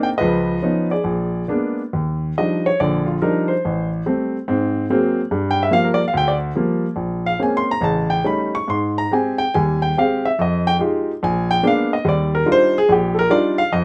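Solo jazz piano in E-flat major, this playful, swinging passage is cut from a longer piece and moves at 142 BPM in 4/4, with a 68% swing on the eighth notes and a loose rubato feel. A baby grand piano carries everything on its own, ranging from A1 up to C#6 with a warm, natural tone, short sustain and an up-front presence. After a brief opening built on Db9 and Bb7b9, the piano settles into its solo at 1.9 seconds on an Ebmaj9 chord. The harmony then wanders colorfully through Am7, Ab9, Gm7, Bbm9 and A7#11 before turning through Abmaj7, Fm9 and Bb7b9 to land back on Ebmaj9 at 12.1 seconds. A moderate club reverb gives the piano an intimate sense of room, and the instrument is tuned slightly low, to A4 = 439 Hz.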